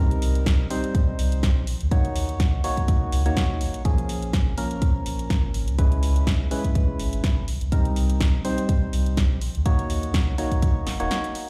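Moody deep house at 124 BPM with a swung 16th-note feel: hollow, nasal organ-like stabs with chorus and tape echo ride over a full sine-and-triangle sub bass with an octave, both pumping from sidechain compression as they move through Cm7, Ebm7, Bbm7 and Dbm7. A layered electronic kick enters at 0.5 s beneath punchy, tape-colored analog drum machine hi-hat and snare. Everything sits in a large studio reverb, as if played on a big sound system in a bare room, and the excerpt ends with a brief break from 11.1 s.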